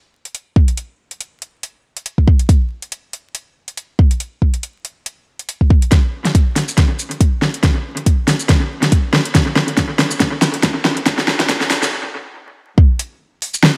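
A half-time groove in 4/4, with a lightly swung sixteenth-note feel, drives this brooding, cavernous dubstep fragment cut from a longer piece. A produced, layered electronic drum kit enters at 0.3 s, with a fat snare, metallic hi-hats and a shaker roughened by overdrive and trailed by analog delay. A deep electronic kick joins shortly after, and both drum parts sit up front in the mix. From 5.9 s a build-up takes hold through 12.8 s, with a filter sweep running across it and a drum fill lasting until 11.9 s, when a brief stop holds until 12.8 s. A moderate plate reverb and digital ambience give the echo-heavy mix its hollow depth, while vinyl crackle and a high-pass filter add a grainy, thinned-out edge.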